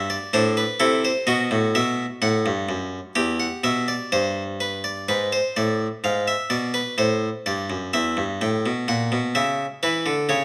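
In a straight 4/4 pulse at 63 BPM, this stately yet lively baroque-style three-part fugue in E minor, cut from a longer piece, is carried by a solo Italian-style harpsichord with a plucked, nasal, bright tone sitting up front in a moderate recital hall reverb, moving from F#dim through B7 to Em before a second section from 5.1 seconds turns through E7/G#, Am and F#7/A#.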